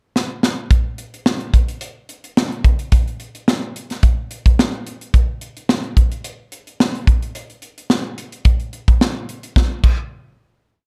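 A lightly swung sixteenth-note groove at 108 BPM in 4/4 drives this short, breezy, urban pop piece, played on a crisp acoustic fusion drum kit that opens with a fill at 0.2 seconds, settles into a polished verse of punchy kick, high-tuned snare, hi-hat and bright crash cymbal sitting up front in an airy studio room, and closes on a final hit at 9.6 seconds, framed by light reverb and a dark, warm production.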